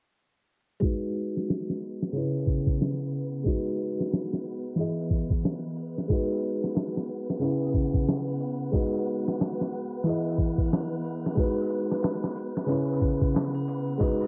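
From 0.8 seconds, a soft, felt-muted upright piano with audible action noise, harmonic tremolo and tape echo plays G#m7, C#m7 and Emaj7 chords over a gritty, pitched-down boom bap sampler-style drum kit with a thumpy kick, while a tube shaker and triangle sit faintly in the background and an airy, wind-like tuned noise texture arrives at 1.7 seconds, giving this melancholic, dark trip hop excerpt at 91 BPM in G# minor a hazy home-cassette sound under a filter sweep.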